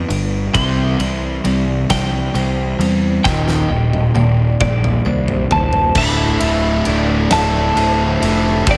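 Light reverb frames this cathartic, melancholic post-rock excerpt, which moves slowly at 44 BPM in 6/8 through Gadd9, Cadd9 and Ebmaj7 before settling on Dmadd9 at 6.0 seconds. A bright, twangy twelve-string electric guitar carries the melody through a digital delay. Beneath it are an overdriven electric guitar riff, a fuzz-soaked, punchy picked bass up front, a compressed fuzz guitar in the background, dark, very quiet fingered arpeggios from a clean guitar that stop at 6.0 seconds, ringing vibraphone arpeggios with delay, and a barely audible pedal steel holding sustained chords. The huge arena drum kit, with its big, mid-forward room sound and fat snare, enters at 0.1 seconds and drives a build-up capped by a fill from 3.2 seconds.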